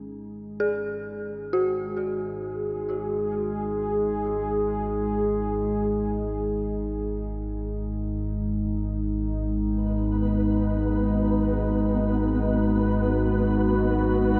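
A dark analog pad holds sustained G# minor chords with a moody, detuned sawtooth depth and a chorus shimmer, while an eerie, inharmonic synth bell plays arpeggios through chorus and tape echo in this ominous, vast dark ambient drone in free time, cut from a longer piece that fades in on its synth drone. A deep rumbling drone enters beneath them at 2.1 seconds, and a flickering, grainy granular texture joins at 9.9 seconds. A cathedral reverb with a 5.4-second decay bathes the sound in a wet, cavernous space.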